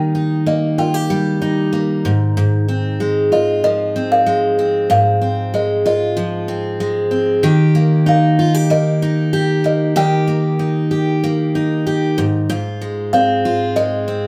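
Recorded live in one room with a moderate studio reverb, this heartfelt, sunny pop excerpt pairs a woody, ringing kalimba melody with a full-bodied, up-front picked steel-string acoustic guitar accompaniment, moving into a second section at 7.4 seconds.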